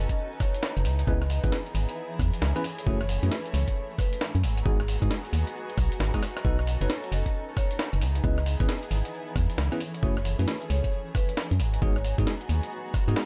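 A hollow, percussive organ-like FM bass sits up front in this soulful, bouncy two-step UK garage excerpt at 134 BPM in F# dorian, driven by a knocking electronic kick and a gritty, pitched-up breakbeat kit of hi-hat, rim click and high-tuned snare with a fill at 6.1 seconds, while a grainy egg shaker, a bell-like tine electric piano entering at 1.1 seconds with lush chorus and delay, a mellow vibraphone melody with delay, distant woody violins pumping on sustained chords and a cloudy granular pad all move through a B7, C#m7, F#m9, G#m7 progression in a dark, warm mix with little reverb.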